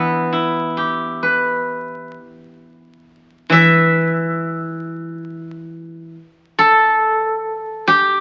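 Chinese traditional solo plucked strings, contemplative and elegant, with a steel-string zither played alone with fingerpicks in a free, rubato 4/4 over about 8.2 seconds cut from a longer piece. The zither sits up front, bright and silvery with a ringing acoustic tone, moving from an opening passage into a new section at 3.1 seconds. A moderate club reverb surrounds it, and the sound carries the crackle of a very old 78 rpm record.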